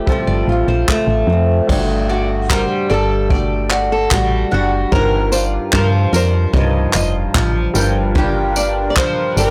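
A bright, double-tracked flamenco guitar sits up front in this reflective, wistful acoustic pop excerpt, its finger squeaks audible over a punchy, round FM bass and a jazz brush kit with dark crash cymbal, boomy kick, handclaps, tambourine and a softly clipped snare. A fingerpicked steel-string acoustic guitar carries the melody through digital delay, while a woody, slightly detuned upright piano with audible action noise and a double-strung mandolin playing delayed arpeggios sit in the background. A reedy, breathing harmonium enters with sustained chords at 8.2 seconds, and the recording is blown-out and overdriven under light reverb.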